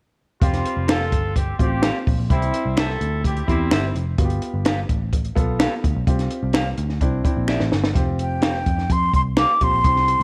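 Uptempo 1960s-style soul in F major at 127 BPM with a warm, danceable feel, where a compact cocktail kit with a high-tuned snare and punchy kick drives a foam-muted picked bass and a woody upright piano, a tight vintage horn section plays a brief second line until 3.9 seconds, a slightly broken-up guitar adds warbly stabs over a dry background finger snap, and after a drum fill a breathy, close-miked concert flute takes the melody at 8.2 seconds, all in light studio reverb.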